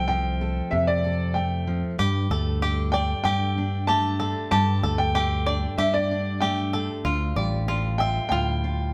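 A clear, woody upright piano with a slightly detuned, boxy tone and long sustain carries the melody up front in this stirring, yearning folk excerpt, over a dark, fingerpicked steel-string acoustic guitar and a round, amped fingered electric bass. A bright, twangy bluegrass banjo played with fingerpicks joins at 2.0 s with percussive arpeggios, as the chords move from F to Gsus2 to Dmadd9 and the band plays live in one room with wet studio reverb.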